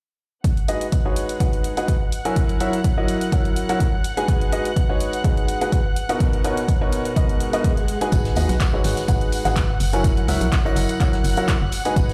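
A lightly swung groove drives this soulful, energetic piano house excerpt, with a punchy, tape-warm electronic kick up front and an analog drum machine adding handclaps, hi-hat and rim clicks, all sounding as if played through a big system in a bare stone room. A clear, woody upright piano riff, pumping and filtered with delay, sits over dark, smooth-topped bowed violin chords with vibrato and vintage sampler grit, cycling through minor seventh, dominant seventh and major ninth harmony. After a background electronic swell at 7.4 seconds, at 8.1 seconds a hollow, organ-like FM bass with a fast, decaying attack joins alongside a distant natural acoustic kit with hi-hat, snare and tambourine, plus a compressed background tambourine.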